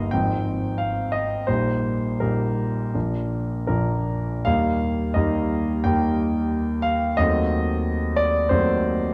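The recording has a dark, warm production, with a concert grand piano set up front in a moderate concert hall reverb that gives it a gentle sense of space. This is a short cut from a longer romantic character piece for solo piano in Eb major, and its mood is hopeful and lyrical. The tempo moves between 73 and 96 BPM in 4/4 with a rubato feel, so the pulse breathes freely rather than holding strictly steady. The piano sounds clear and natural, with a deep bass, and its range spans G1 to G5. The harmony moves from Fm7/Ab through Eb/Bb and Bb to settle on Eb at 4.5 seconds, before an Ebdim7 at 7.2 seconds adds a note of tension near the end of the 9.1-second passage.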